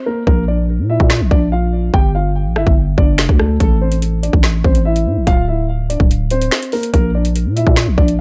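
A dry, up-front mix opens this cold, dark drill cut at 144 BPM in a half-time feel, where a mellow, boxy concert grand piano carries the melody through a low-pass filter and digital delay from 0.0 seconds, joined at 0.3 seconds by a growling, buzzy 808-style bass and an electronic drill kit of hard-clipped kick, woody snare, metallic hi-hats, rim clicks and finger snaps over chords moving from Bb through Am and D7 back to Bb.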